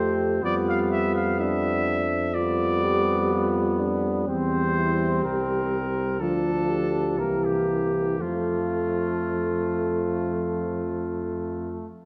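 Rubato and unhurried at 58-63 BPM in 4/4, this noble classical brass quintet passage in F major sets a clear, distant trumpet melody over a smooth-topped second trumpet, a soft-attacked French horn and mellow euphonium, and a warm, up-front bass trombone, with light vibrato in the four lower parts and a roomy concert hall reverb as the harmony moves from G7/F through C/E, Dm and C7 to settle on F at 8.2 seconds.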